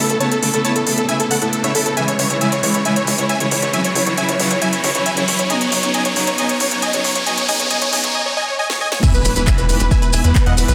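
Euphoric, soaring uplifting trance at 136 BPM in E major, cut from a longer piece, where huge detuned supersaw chords carry the melody up front over a biting studio string section and a tight sequencer bass, all pumping with sidechain, along with a cracking techno drum kit, as a filter sweep and background riser build through a brief break and drum fill before the drop at 9.0 s brings in a punchy electronic kick, a lush unison pluck and a grainy cabasa, all bathed in wet digital room reverb and a dense, heavily limited master.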